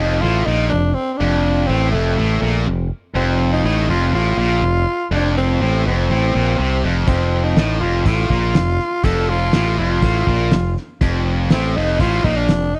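A growling, raspy tenor saxophone carries the melody up front with slapback echo and light vibrato, over two bright picked distorted guitar riffs and a growling, overdriven fingered bass, all in a sunny, confident classic rock groove at 122 BPM in F mixolydian, resting on an F chord. At 7.1 seconds a cloth-damped, muffled drum kit enters with a fat snare, tight kick and hi-hat. The dry, close 1970s-style studio sound gives this short cut from a longer piece a gritty, punchy edge.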